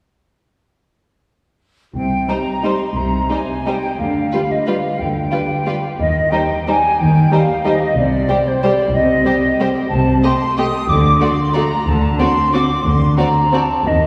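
A classical orchestral ballroom waltz in C minor at 181 BPM, cut from a longer piece, its dark, bittersweet mood carried by uneven beats and rubato in 3/4. Cellos and double basses anchor the low end from 1.9 seconds, joined by an airy, crisp-edged flute group up front, then by lush violins on the melody and a second line, with expressive violas gliding between notes in the accompaniment. The whole ensemble is heard from further back in a wet concert hall, where the harmony drifts through shadowed minor and diminished colours before settling on an open D7 chord near 11.9 seconds.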